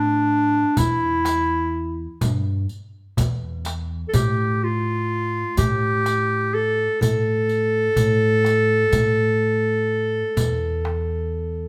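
Longing and hypnotic, this short cut from a longer piece captures a Turkish makam ensemble playing live together in one room with light reverb, moving at 125 BPM counted in eighths across a straight 10/8 metre and tuned to A4 = 438 Hz. A clarinet carries the melody from the first moment, solo and up front, with a warm, classical-style tone ranging from D4 to A4. Beneath it, an upright bass with steel strings plays pizzicato between E2 and A2, its woody acoustic sound sitting close and prominent. At 0.8 seconds the percussion joins: a metal-shell darbuka with a crisp, close-miked snap, and a riq whose bright jingles sound quieter and set back in a small room. The riq drops out at 10.6 seconds and the darbuka at 11.1 seconds, leaving the clarinet and bass to carry the final moments.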